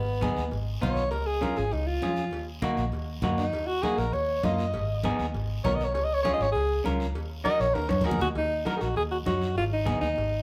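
A clear, up-front alto saxophone with pop-style vibrato solos over a fiery, driving cumbia in Eb minor at 199 BPM, with the solo running to 8.4 seconds, where a percussion fill leads into a new section. A dark, round, foam-muted fingered electric bass punches up front, while a clean semi-hollow electric guitar adds shadowy accompaniment through spring reverb. Thick-skinned congas struck with hard hands, a raspy guiro and very quiet, ringing cowbell and timbales fill out the groove of this live band in a small room.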